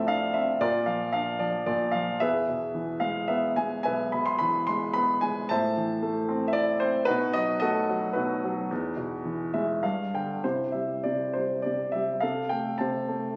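Classical solo piano in a relaxed, sunny mood: a warm, polished baby grand, up front and present, sings a lyrical line in a flowing rubato three-four, adding a brief fill from 9.3 seconds before moving into a new section at 10.4 seconds, all captured on a phone in the room with light reverb and a top end that stops at 8.0 kHz, in a short passage cut from a longer piece.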